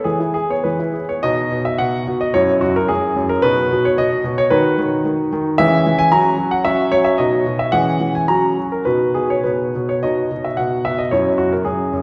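A classical-period piano sonatina in B major, this short excerpt moves at 110 BPM in 2/4 with a rubato feel, its mood cheerful and graceful. A solo concert grand piano carries the whole 12 seconds, ranging from F#2 up to A#5 with a clear, polished tone, deep bass and long sustain, sitting present and up front. The harmony opens on E before settling into B, then passes through F#9, D#m and C#m/E on its way back to the home chord, with F#9 returning near 11.1 seconds. A brief opening phrase gives way at 1.2 seconds to a longer passage that carries through to the close. The piano rings out in a wet concert hall reverb with a two-second decay, lending the playing a spacious, resonant setting as the cut ends mid-piece.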